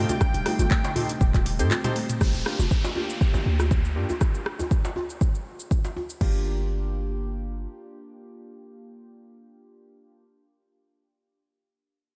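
Hypnotic and warm, this afro house passage, cut from a longer piece, moves at 120 BPM in G minor with a gentle swing on the sixteenths. It opens on a drop over an Am7b5 chord, where a smooth, expressive sawtooth lead with chorus, vibrato and a diffuse ambient delay sings a high G5 above a very quiet, detuned pad and a woody, hollow-toned kalimba tucked in the background with pumping arpeggios. Underneath, a deep, boomy 808-style bass with a sine body and noise layer sits up front beside a tape-warm electronic kick, while an afro-pop kit of metallic hats, handclaps, rim clicks, shaker, toms and crash mixes with a band-limited, vintage djembe carrying metal rattles. A short break and drum fill arrive at 1.7 seconds as the lead ends, and by 2.2 seconds the harmony settles on Gm7 while an electronic downlifter sweeps through until 6.2 seconds. Round, detuned analog key stabs with chorus, a filter sweep and sidechain pumping carry on after the drums drop out around 6.3 seconds, lingering with the bass and then alone to the close, all under a light reverb.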